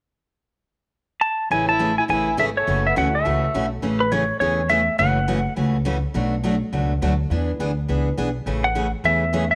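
A brisk 207 BPM swing in 4/4, with eighth notes given a light lilt, drives this playful country excerpt in A major. A clean, twangy lap steel carries the melody up front from 1.2 seconds, its compressed slide tone sitting high between B4 and A5, then returns briefly near the end. A dark, distant fiddle adds a bowed second line with light vibrato in the low register, heard only in the early stretch. A bright, full-bodied picked acoustic guitar and a woody pizzicato upright bass hold down the accompaniment from 1.5 seconds onward, moving through Amaj7 and F#m7 before a Bm7 to E7 turn leads back home. A warm upright piano slips in for a single fleeting moment at 3.0 seconds in the background, and light reverb lends the whole a gentle sense of space.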